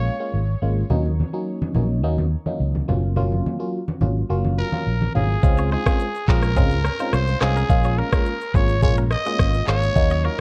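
Hypnotic and mellow, this afrobeats fragment is cut from a longer piece and moves in a straight four-beat groove over minor-seventh and major-seventh chords. A biting, warbling FM electric piano with a vintage feel and a noise layer carries the accompaniment throughout, its fast-attack, decaying notes colored by phaser, while a dark, round, amped fingered bass sits punchy and up front. A growling trumpet sounds briefly at the start, then returns at 4.6 seconds with a raspy, gritty, pop-style solo line full of vibrato. Low-tuned acoustic congas, played with soft hands in a small room, ring through the opening from 0.9 seconds until an electronic afro-pop drum kit takes over at 5.4 seconds with a knocking kick, handclaps, rim clicks, shaker and toms, re-recorded in a large room. Just after the drums arrive, a twangy, direct-recorded clean electric guitar picks a compressed riff with tape echo in the background, and the whole track carries the dry character of cassette tape.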